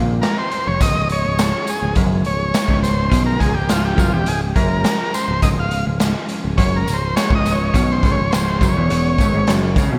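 Psychedelic rock with a kaleidoscopic, hazy mood, this excerpt sits in a straight 4/4 groove and is cut from a longer piece. A buzzy, vintage combo organ carries the melody up front, its heavy vibrato and analog delay giving the solo a woozy shimmer as it moves from Fmadd9 to Db. Beneath it, an electric guitar through a small old amp plays a low, slightly broken-up riff treated with flanger, joined by a picked electric bass that sounds direct and amped. A raw garage drum kit drives things with a punchy kick, medium-tuned snare and hi-hat, its saturated, gritty tone and rolled-off top set in a bright stone room, while a jingly tambourine enters at 0.8 seconds in the background. A lush, sawtooth string machine with a sub octave and ensemble chorus holds very quiet sustained chords, and the whole dreamy mix is soaked in plate and small room reverb.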